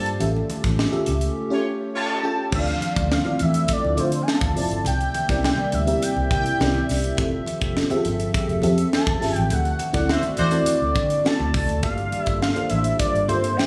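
A fat, detuned analog lead with digital delay opens this nocturnal, bittersweet slice of polished 1980s jazz-funk pop, carrying the melody over a lush, chorused FM electric piano, a hollow, flute-like pad and a round, foam-muted electric bass. A crisp fusion kit with a high-tuned snare and punchy kick arrives at once, very quiet congas sit beneath, and the band hits accents together from 0.2 to 2.5 seconds and again from 9.5 to 11.8 seconds. A clear, distant horn section adds brief second lines near 1.5 and 10.1 seconds, all set in a light studio reverb.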